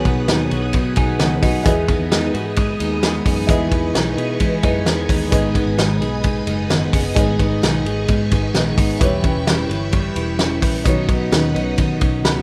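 A short cut from a jangly indie pop tune opens with the full band already playing, led by a loose, up-front drum kit with a fat snare, punchy kick and dark cymbals, its gritty, saturated sound rolled off at the top. Underneath, a vintage muted picked electric bass sits dark and round, while a clean, compressed twelve-string electric guitar rings out arpeggios touched with slapback echo, set back in the mix beside a full-bodied picked steel-string acoustic on a jumbo body. A woody, slightly detuned upright piano, intimate with audible action noise, adds accompaniment and drops in short fills at 0.7 seconds and again at 12.0 seconds. Above it all, a bright sawtooth string machine holds soft-attacked, long-releasing chords that swirl and warble through ensemble chorus and phaser. The harmony moves from B6 through Emaj7, G#m and Em6 to Badd9, giving the breezy straight-time groove a nostalgic glow, all captured in a moderate studio room with the rough feel of a home demo and a faint mains hum.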